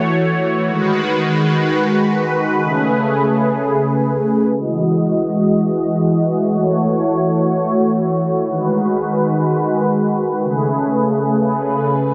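In free time, this floating, dreamy hip hop fragment in E major, cut from a longer piece, features a lone analog pad of detuned sawtooth tones, smooth and bright with a soft attack, sustained chords, a moving notch and chorus, placed up front in a dark, low-pass-filtered mix. It drifts through F#m7, G#m7 and Amaj9 before a filter sweep arrives at 4.6 s on Emaj9, all within a huge ambient reverb with a 7.6-second decay.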